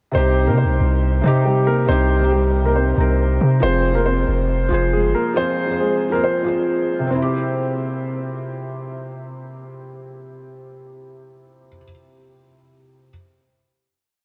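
A dark concert grand piano carries this ominous, cold drill piece, playing a looping melody doubled in octaves that repeats like a sampled loop, softened by a low-pass filter and trailed by tape echo. Beneath it, a felt-muted upright piano supplies soft, intimate chords in a spread voicing, also looped, with a lush chorus and its own low-pass filter. A long, sine-like 808-style bass sits up front with a fast attack, sustaining deep sub-bass notes that decay and slide in pitch, before dropping out at 5.1 seconds. The half-time hook moves from C minor to F minor, then settles on a final C major chord at 7.1 seconds, with the upright ringing on alone after the grand stops at 8.4 seconds. The whole piece feels dreamy and mellow, soaked in a huge ambient reverb.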